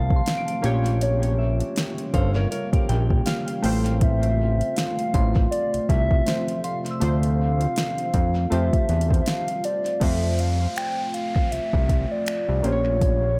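A hollow, woody clarinet-like synth lead opens this romantic, tender contemporary R&B excerpt, carrying the melody with vibrato over analog keys, a deep ambient pad and a fat analog bass. The drum kit arrives a moment later with a soft kick, fat snare, metallic hats, finger snaps and crash cymbal, sitting up front alongside the thick, saturated bass in a loose, swung sixteenth-note feel. The round keys and the lead are treated with chorus and dub echo, while the moody pad hangs in the background with its own built-in reverb, drifting through chords that move from F to Bbm6, Fmaj7/A, Dm9 and Fmaj9. A soft, warbling FM synth bell adds a pure, vintage glint high above, and a boxy, fingerpicked steel-string acoustic guitar slips in briefly from 2.1 to 3.6 seconds with audible finger squeak, overlapping a short keys fill that begins at 2.9 seconds. The mix is echo-heavy with little reverb, and an electronic downlifter sweeps in at 10.0 seconds as the music returns to F before the excerpt cuts off.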